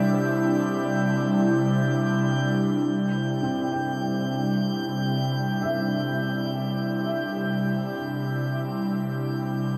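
An airy, breathy pad sits up front, holding sustained chords between C3 and E4 with a slow attack and long release, its detuned tone thickened by chorus, phaser and a shimmering reverb. Alongside it drifts a glassy harmonics texture high on G6, with calm, drifting overtones that begin to fade out from 2.9 seconds. At 3.4 seconds a felt-muted upright piano enters in the background, playing mellow, intimate arpeggios between C4 and G5, softened further by ensemble chorus, a diffuse ambient delay and shimmer reverb. This peaceful ambient piece floats in free time in C major, tuned to A4 = 443 Hz, and rests on a C chord from the start. The whole mix is dreamy and soaked in a huge, wet reverb with a long decay, and this passage is cut from a longer piece.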